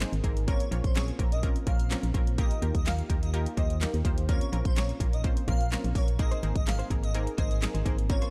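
A straight 4/4 pulse at 126 BPM drives this euphoric, upbeat dance-pop excerpt in Ab major, with a punchy, up-front electronic pop kit of kick, fat snare, hi-hat and handclaps leading the mix. Beneath it, a hollow, organ-like FM bass with a fast attack and decaying notes pumps against the kick, while a round, detuned analog pluck built from sawtooth and pulse waves with a noise layer adds a chorused, sidechain-pumped accompaniment. From 0.5 seconds an airy, dreamy lead carries the melody in a high register, a soft, sustained unison sine sound with a sub octave, vibrato, portamento, chorus and delay. The harmony moves through Bbmadd9, Ebadd9 and back, settling on Abadd9 at 6.2 seconds, where a clean, direct-recorded electric guitar enters with a picked, compressed riff coloured by analog chorus. The production is dark and close, with little reverb, and the passage is cut from a longer piece.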